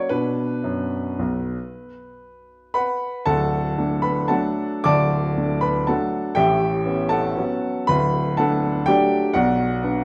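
A lone upright piano opens in B minor, its woody, open tone placed up front in a wet, large studio reverb with a 1.3-second decay. This is a classical piano waltz in 3/4, played with rubato so the tempo drifts between 103 and 128 BPM, and the mood is bittersweet and wistful. At 3.3 seconds the music turns toward D major, brightening before an A13 chord adds a lingering color. The harmony settles back on D and then returns to B minor at 9.3 seconds, restoring the melancholy. The piano spans from D1 to D6, and the dark, warm production gives this brief passage, cut from a longer piece, an intimate, reflective character.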